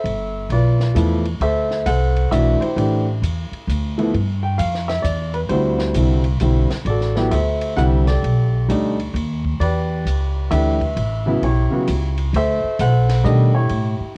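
A lilting swung waltz drives this playful, warm jazz piano trio fragment, cut from a longer piece and captured at home on cassette with a light room reverb. Up front, a clear, intimate grand piano carries the melody through a plate reverb, its action noise audible, while a woody pizzicato upright bass on steel strings sits close beside it across a harmony rich in dominant thirteenths and altered chords. A compact cocktail kit sits low and dry behind them, with dark cymbals, a high-tuned snare and a punchy kick coloured by a cassette-tape tint.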